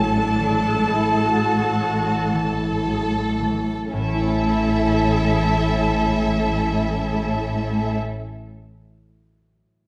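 Moving in a slow, rubato 4/4 at roughly 36-43 BPM, this brief classical passage in A major eases back over its first 3.9 seconds, carrying a tender, warm mood cut from a longer piece. A close, rich violin section sings the melody high in its range with expressive vibrato, while a pure, bright small flute group holds a tongued second line on A5. A lush second violin section fills in beneath, and a distant viola section adds bowed accompaniment with portamento. In the background, a concert harp rings out thumb-plucked arpeggios spanning from A2 to E5, lingering until about 8.3 seconds. The foundation comes from an up-front double bass section with a focused, smooth top, paired with a cello section sliding gently on A2, all set in a wet stone room reverb that gives the ensemble a resonant glow.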